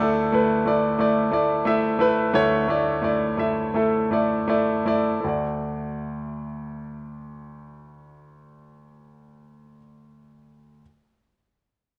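A wet spring reverb with a 2.0-second tail and a small room ambience gives this brief pop excerpt its glossy, lingering sound. A clear baby grand piano sits up front as the only instrument, playing a polished, present accompaniment from D2 to E5 in D major, tuned to A4 = 443 Hz. In straight 4/4 at 78 to 92 BPM, the opening slows down over its first 5.2 seconds while resting on a Dsus2 chord. At 5.2 seconds the harmony settles onto a plain D chord, and the piano carries on until 10.8 seconds. The mood is anthemic and uplifting, like a moment lifted from a larger song.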